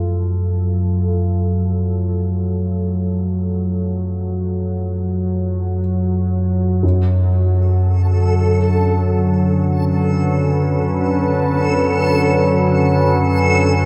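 Floating in free time, this unsettling dark ambient drone sits in F# harmonic minor, tuned slightly flat to A4 = 436 Hz, and is cut from a longer piece. A deep, rumbling drone sits up front, its ominous sawtooth-and-triangle tone colored by a phaser, while a moody, detuned pad with a sub octave fades in to hold sustained chords, moving from F#m to D6 at 6.8 seconds. In the background, a mellow, boxy concert grand also fades in, its arpeggios trailing through a delay. At 8.1 seconds a reversed, swelling texture appears on a single A4, bright and dreamy with a granular shimmer. The whole mix is drenched in a cathedral-like reverb with a long 5.6-second tail, giving the piece a cavernous, foreboding atmosphere.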